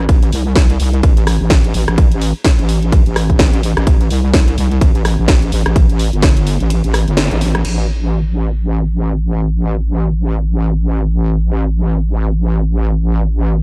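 A heavy wobble bass opens this swaggering, bouncy bass house excerpt at 127 BPM in A minor, riding low between G1 and C2 with a detuned square-and-sine tone that is resonant, saturated and pumped by sidechain compression, with chorus and overdrive thickening it up front. Almost at once a punchy electronic kick drum and a layered house drum kit join in, the kit supplying crash and ride cymbals, hi-hat, rim click and a cracking snare, all with a swung 16th-note feel. The opening stretch plays as a drop. The kick sits forward in the balance, while the kit stays further back, both carrying a tape-like, small-room character. The kick falls away at 6.3 seconds, a band accent lands shortly after, and once the kit ends at 7.8 seconds the sustained, compressed bass carries the remaining section alone in a dark, dry production.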